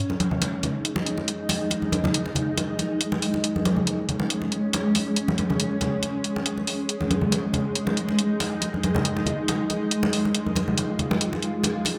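Brooding and meditative, this 12-second fragment of deep dubstep at 139 BPM moves in a half-time 4/4 with a light swing on the 16ths, as a blurred, evolving granular cloud pad holds sustained G#5 harmony between G#3 and E#4 through its own built-in reverb, while congas with a dub echo and a layered, bright electronic hi-hat sit up front in a moderate digital room ambience.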